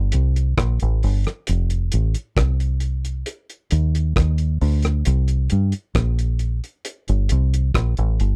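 A deep, dark dub bass, fingered and foam-muted with a round, punchy tone, sits up front and carries this short roots reggae excerpt from the very start, moving between F1 and G2. A cloth-damped drum kit with a tight, thuddy kick, rim click and hi-hat enters at 0.1 s, its rolled-off top and small-room sound also placed up front. The mood is serious and meditative, and the dry, close recording has a 1970s studio character.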